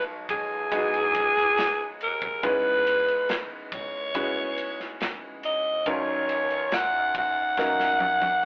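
Heartfelt and hopeful, this short pop ballad excerpt at 70 BPM in 4/4 puts a growling, raspy alto saxophone up front with jazz-style vibrato over a clear concert grand piano with deep bass, while an acoustic studio drum kit with a punchy kick and ride cymbal enters at 0.3 seconds and closes on a drum fill at 7.6 seconds, all wrapped in a rough rehearsal-room sound with saturation, a telephone-like tone and moderate reverb as the chords move from G#m7/B through C#m7 to D#m7.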